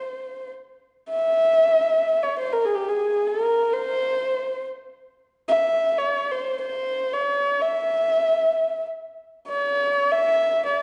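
A lone bowed kamancheh, dark and woody, sings close and up front with vibrato and portamento between G4 and E5, carrying a festive, warm Persian modal melody in free time in dastgah homayun on C throughout this 10.8-second fragment of a longer piece, heard from further back in a recital hall whose wet reverb lingers for 1.5 seconds and whose sound is dulled above 10.6 kHz.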